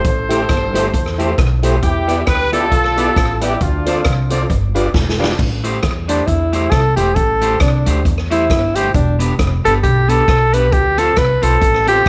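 This ska excerpt, cut from a longer piece, moves at 135 BPM in 4/4 with a swung eighth-note feel in A minor, and its mood is mischievous and driving. A horn section opens with the melody as a present, up-front ensemble with light vibrato, while a swinging big-band drum kit with a punchy kick, medium-tuned snare, rim clicks, hi-hat and crash cymbal sits at a distance in a roomy studio space, touched by slapback echo. Beneath them a pizzicato upright bass on gut strings gives a woody, thumpy low end, and a dark, picked electric guitar at the edge of break-up supplies accompaniment. From the background, a lightly overdriven tonewheel organ with key click and a slow rotary speaker adds clear stabs until 5.3 seconds, around the point where a drum fill carries the music into its second section. From 6.1 seconds a mellow alto saxophone takes a smooth-topped solo with vibrato up front over Am7, Em7 and Dm7 chords, and plate and small-room reverb lend the whole mix a sense of space.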